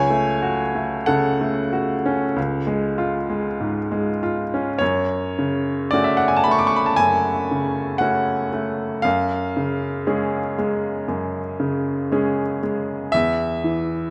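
A solo baby grand piano opens this melancholic, mournful romantic nocturne in F# minor, moving in a slow, rubato 4/4 between 46 and 62 BPM and ranging from C#2 to D6. The piano sounds clear and intimate, placed up front by close, detailed microphones that catch the audible noise of its action, while its long sustain blooms into a moderate recital hall reverb. Harmonies shift from F#m/C# to C# before a new passage begins at 4.8 seconds on F#m, later settling onto C#/F# and giving way to unaccompanied tones at 13.1 seconds in this cut from a longer piece.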